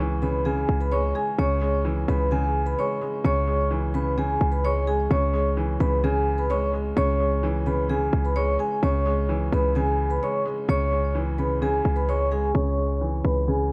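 A punchy, heavy 808-style bass drives this dark, menacing trap excerpt. Its sine tone carries a noise layer and a fast attack that decays after each hit, and it sits up front on a single low note throughout. From 0.2 seconds, a vibraphone played with medium mallets carries the melody, its metallic, ringing tone shaded by a low-pass filter and trailed by tape echo, with a medium motor vibrato. A worn, boxy baby grand piano holds the accompaniment in a low register, also filtered, while the hip hop groove settles into a half-time feel over one minor chord. The dry, close sound keeps all three parts up front. At 12.5 seconds, a filter sweep marks a brief new section before this fragment of a longer piece cuts off.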